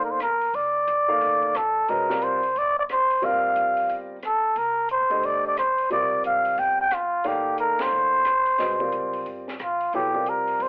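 Recorded at home on cassette with a telephone-like sound, moderate spring reverb and small-room ambience, this intense, hypnotic modal jazz excerpt swings at 179 BPM in C dorian over a single C9sus4 chord, with a veiled, breathy cup-muted trumpet up front carrying the melody with light vibrato and a growling rasp, a warm grand piano with audible action noise and deep bass accompanying beneath it, a woody pizzicato upright bass in the background, and a dark, compact cocktail drum kit with a high-tuned snare and punchy kick entering at 0.2 seconds, the band hitting an accent together at 7.8 seconds.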